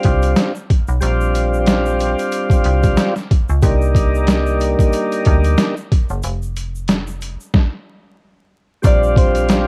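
Nostalgic and soulful, this boom-bap hip-hop excerpt in Bb major moves at 92 BPM with a swung feel, as a smooth tonewheel organ with slow rotary speaker and a metallic, digital FM bass with a fast attack and decaying notes sit up front beside a gritty, overdriven sampler-style drum kit with a thumpy kick and high-tuned snare. A grainy tube shaker ticks in the background from 0.2 seconds, the harmony moves from Bb6 to Cm9 before a break at 6.2 seconds, and a breathy, whispered tenor saxophone slips in at 8.9 seconds with scooped notes and vibrato. The dry home-cassette sound carries vinyl crackle throughout.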